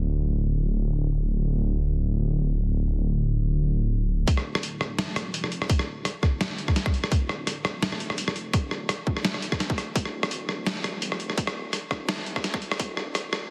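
Spacious and heavy, this half-time drum and bass cut at 169 BPM in D minor opens with a dark, rumbling detuned saw bass alone, then at 4.3 seconds a hard-clipped electronic kick and a gritty, pitched-down boom bap sampler kit of hi-hat, rim click and soft-clipped snare arrive up front as a build-up and filter sweep run to the end at 13.5 seconds, all in a dense, heavily limited master with light reverb.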